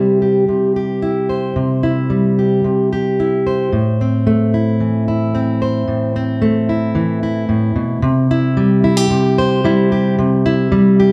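A fingerpicked, plugged-in steel-string acoustic guitar with a full-bodied jumbo tone sits up front in this short, uplifting folk fragment, moving in a straight 4/4 from C to A minor before settling back on C at 8.0 seconds, framed by a moderate large-studio reverb over a small room ambience.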